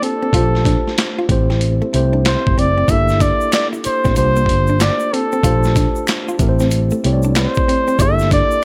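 Introspective and late-night in mood, this short neo-soul and R&B passage, cut from a longer piece, moves at 94 BPM in 4/4 with a lazy 16th-note swing. A flugelhorn carries the melody up front, its punchy yet smooth tone touched with light vibrato and a trail of tape echo. Beneath it, a mellow tine electric piano comps through its built-in speakers, while a dark, clean hollow-body jazz guitar picks a second line in the background. A boom bap sampler-style kit of kick, snare, hi-hat and handclaps sits forward in the mix, gritty and compressed, with a thumpy kick and a high-tuned snare. The round, amped fretless bass enters at 0.3 s with an ensemble chorus, and a close egg shaker and finger snaps join at 2.9 s. The chords cycle from Bbmaj13 through Am7 and Gm69 to C9sus4 and back, all set in light reverb.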